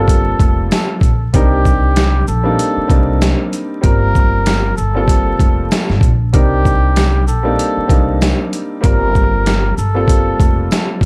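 A veiled, breathy cup-muted trumpet melody touched with delay, a mellow baby grand piano with cassette-tape coloring and a woody pizzicato upright bass open this reflective, dark boom-bap hip-hop excerpt at 96 BPM in C dorian, joined at 0.1 seconds by a gritty, compressed sampler-style drum kit that sits up front with a thumpy kick, medium-tuned snare, hi-hat and shaker on a swung 16th feel, and at 0.7 seconds by a very quiet, jingly tambourine, over chords that alternate between Gm11 and Cm9 in a dry, dark production laced with vinyl crackle.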